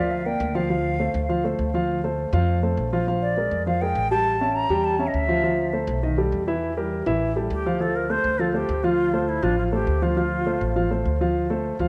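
A brisk jazz fragment in D minor opens with bansuri, grand piano and upright bass all sounding at once, pushing ahead at 203 BPM in a straight 4/4 with a driving, sophisticated mood. The bamboo bansuri carries the melody up front, its pure, crisp tone lifted in the highs and shaded with expressive vibrato. Beneath it, the dark grand piano comps in a mellow, intimate voice, with audible action noise lending it a vintage character. The upright bass, plucked on steel strings, adds a woody, thumpy low end that sits close and present. The harmony moves through Gm7, Dm7, Bb7 and A7b9 before passing through Baug7 and Edim on its way back to Dm7 at 7.8 seconds, where the phrase begins again. A moderate plate reverb surrounds the group, and the bansuri drops out at 10.9 seconds while piano and bass carry on until the cut at 11.9 seconds.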